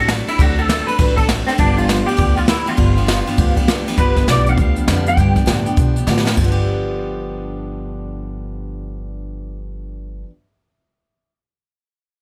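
Retro and upbeat, this swung rockabilly excerpt at 200 BPM in G mixolydian moves from D7 to G7 as a twangy, slightly broken-up electric guitar through a small old amp, colored by ensemble chorus and analog delay, carries the melody until 6.0 seconds over a bright jumbo steel-string acoustic guitar with audible finger squeak, a woody pizzicato upright bass, and an airy, up-front brush kit with dark cymbals and a boomy kick that plays a fill at 6.1 seconds before dropping out at 6.5 seconds, leaving acoustic guitar and bass in light reverb.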